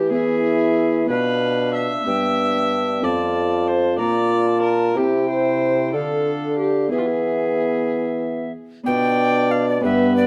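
A gut-string viola, a ringing, fingerpicked Celtic harp and a mellow bassoon with light vibrato open this rustic, solemn Renaissance-style consort dance together at 0.0 seconds. An instant later, at 0.1 seconds, an airy alto recorder takes the melody with a crisp, chiffy attack. A clear trombone joins the harp as accompaniment at the same moment. The viola sits up front as a reedy second line, the bassoon anchors the bass, and the recorder sits lower in the balance. The dance moves in an unhurried 6/8 at 62 dotted-quarter beats per minute through chords of E, Bdim, G, F, Bb, C and Dm. It restarts its opening phrase at 8.9 seconds, in a moderate stone-room reverb with a dark, warm production, as a passage cut from a longer piece.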